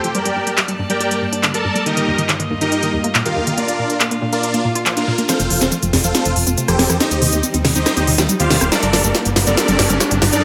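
A straight pulse drives this euphoric, emotional slice of uplifting trance, carried by an electronic, layered techno kit sitting up front, with a cracking snare, smooth hats, handclaps, rim clicks and shaker. Over it, huge detuned supersaw chords carry the melody with a phaser, vintage 12-bit sampler grit, a low-pass filter and digital delay, while a tight, driving sequenced synth plays square-and-sawtooth arpeggios treated with chorus, the same grit and delay, and a filter sweep across the opening half. A bright, earthy chamber string section holds close, bowed sustained chords beneath, moving through Gmadd9, Ebadd9 and Bb before shifting to F and Cm/Eb and returning to Gmadd9. A background swell rises from 4.6 seconds, and at 5.3 seconds the music tips into a build-up with a drum fill and riser, as a punchy, funky analog bass with a resonant filter pluck and ring-modulated edge enters at 5.4 seconds. 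A moderate, lush hall reverb wraps the mix, and the passage is cut from a longer piece.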